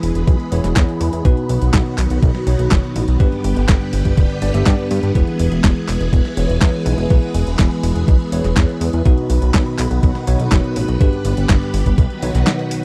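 A dry, close 1970s-style studio sound with digital ambience frames this playful, sunny italo disco cut at 123 BPM in E major, moving through E, B and G chords over a straight 4/4. A glossy, mellow chorused synth bass sits up front with a plucky pulse-and-sawtooth tone, while a bell-like tine electric piano adds bright, clean stabs through phaser and tape echo, and a swirling vintage string machine holds slow-attack chords under ensemble chorus and phaser. A clean 12-bit digital drum machine supplies handclaps, hi-hat and a medium-tuned snare, and a thumpy electronic kick enters at 0.3 s; both drum parts are overdriven and re-recorded in a large room.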